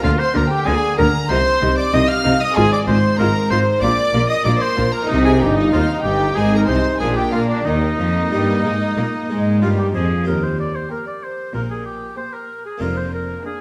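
A straight 4/4 pulse at 94 BPM drives this stormy, baroque-style concerto movement in Eb major, cut from a longer piece, where a distant, warm oboe and a rich, expressive violin section carry the melody over a smooth second violin line. A vibrato-laden viola section and an airy, brilliant Flemish-style harpsichord fill out the accompaniment in the background, while a clear cello section and an intense double bass section anchor the bass until 13.3 s. The progression settles on Eb at 7.7 s before turning toward Bb7/F near the close, all bathed in the wet reverb of a recital hall.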